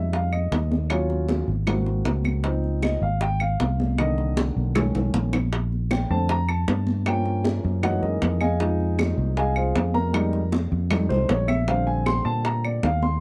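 Close, detailed microphones and little reverb give this short Afro-Cuban jazz passage, cut from a longer piece, an intimate, present sound, with a sultry yet fiery mood at 156 BPM in a straight 4/4. A dark, mellow baby grand piano sits up front and takes a solo across the whole 13.2 seconds, moving through rich chords such as Fm7, Dbmaj9, B9 and Gb13 before settling on Bb69. A growly, punchy fingered electric bass, bright and amped, sits equally forward and anchors the low end. Round, low-tuned bongos struck with hard hands carry a compressed, saturated edge, while high-tuned congas with a thin skin, played with soft hands, sound distant, as if in a large room. Woody claves, also compressed and saturated, click through the groove, and a drum fill from 4.4 to 5.5 seconds briefly stirs the percussion.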